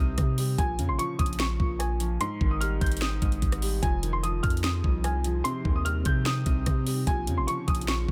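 A half-time trap groove in 4/4 drives this dark, menacing hip hop excerpt, its up-front electronic kit of knocking kick, sharp snare, metallic hi-hats and rim clicks entering at 0.2 seconds beneath a deep, long sine 808-style bass, while a worn, intimate grand piano with audible action noise carries a high melody through a low-pass filter and tape echo over the soft, thin-felt accompaniment of a muted upright piano, and an ethereal, detuned sawtooth pad with ensemble chorus slips in very quietly at 4.8 seconds, all of it set in a digital ambience.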